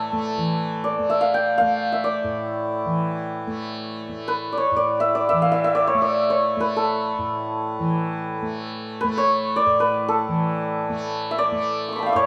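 This Hindustani classical excerpt unfolds in free time in A major, with a meditative, devotional mood. A hammered, ringing santur carries the melody between A4 and D6 over a softly plucked, buzzing tanpura drone spanning A2 to A3, both parts shimmering and up front throughout the 12.3 seconds. A moderate studio reverb gives the warm acoustic instruments a sense of space.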